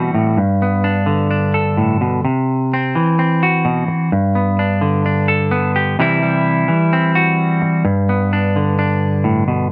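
Highlife at 129 BPM in G major, this short excerpt has a warm, danceable mood carried by a lone semi-hollow electric guitar, playing clean and fingered from G2 to A4. Up front with a compressed, hollow-body tone and light reverb, the guitar moves between G and C chords from 0.4 seconds onward. The sound suggests a band playing live together in one room.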